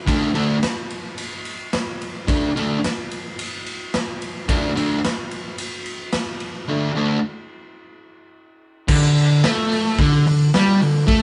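Swaggering and raw, this fragment of garage rock from a duo or trio struts along at 109 BPM in a straight 4/4. A picked, double-tracked fuzz guitar drives a distorted, compressed riff between D3 and D4, sitting up front and anchored on a D5 chord. A gritty, saturated acoustic drum kit plays beside it from 0.1 to 11.2 seconds, with a punchy kick, a medium-tuned snare, hi-hat, ride and crash, all ringing in a bright stone room that pumps audibly and has a rolled-off top. The band sounds as though it is playing live together in one room, with moderate studio reverb and a dark, capped high end. At 8.9 seconds the music moves into a new section before the excerpt cuts off.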